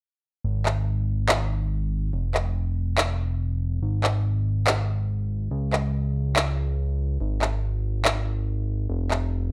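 Future bass at 142 BPM in 4/4 with a half-time feel, this short cut from a longer piece carries a euphoric, bright mood and is tuned to A4 = 436 Hz. A fat analog bass enters at 0.4 seconds and holds the low end from F1 to Db2, its thick sawtooth and square-wave tone shaped by a moving notch, a fast attack and sustained, mellow notes placed up front. Electronic handclaps join at 0.7 seconds, layered and produced with a tape-warm character that also sits up front in the mix. The two parts play together in a digital ambience until the claps stop at 9.2 seconds, leaving the bass to finish alone at 9.5 seconds.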